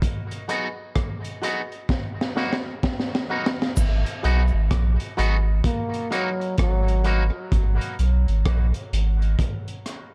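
This excerpt from a longer dub reggae piece opens with a crunchy breakbeat drum kit, gritty and saturated with dark cymbals, a high-tuned snare and a tight kick, sitting up front at a slow 64 BPM in G# minor with a swung 16th-note feel. From 0.5 seconds an envelope-filtered electric guitar adds twangy, picked accompaniment, and a clear baby grand piano places open, long-sustaining stabs, both trailing dub echo over G#m7 and Bmaj7 chords. A drum fill leads into the next section at 3.8 seconds, where a round sine sub bass enters deep and up front, and a brief compressed cabasa accent flickers through its own echo. A close-miked trombone carries a short melody with light vibrato from 5.7 seconds, also sent into dub echo, before the guitar, piano and trombone drop out around 7.2 seconds, leaving the bass and drums under a G#m chord. The small room ambience and dark, warm production give the whole passage a spacious, meditative mood.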